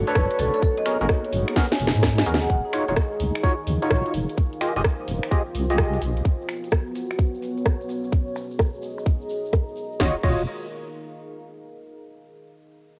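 A deep, saturated wobble bass anchors this soulful, moody two-step garage excerpt in Eb minor at 128 BPM with a 65% swing, sitting up front beside a tight electronic kick, a cracking garage drum kit with muffled hats, snaps and rim clicks, and a grainy, bright egg shaker. Hollow, mellow organ stabs and a hard-mallet marimba carry cassette grit and tape echo, while a breathy, very quiet pad drops out at 2.5 s and a dark ambient pad pumps under chorus and reverb until 11.8 s. The opening drop ends with a drum fill, a filter sweep shapes the drums from 2.5 s, and the bass and stabs return briefly at 10.0 s, all with the lo-fi feel of a home cassette recording.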